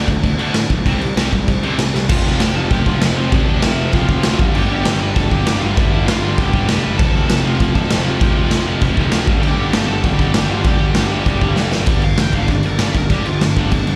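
Heard through a club PA with plenty of room reverb, this energetic, upbeat punk rock cut opens with the full band at once: a raw garage drum kit up front, its boomy kick, gritty saturated snare and crash cymbal ringing in a bright stone room. Beneath the drums a growly, overdriven fuzz bass drives alongside three picked rhythm guitars: a bright overdriven one with slapback echo sitting in the background, a dark double-tracked fuzz guitar and a tight, very quiet distorted part. After a drum fill at 1.9 seconds, a dark high-gain lead guitar with slapback echo and delay comes in at 2.1 seconds, carrying the melody over the riffing until the clip cuts off at 14.0 seconds.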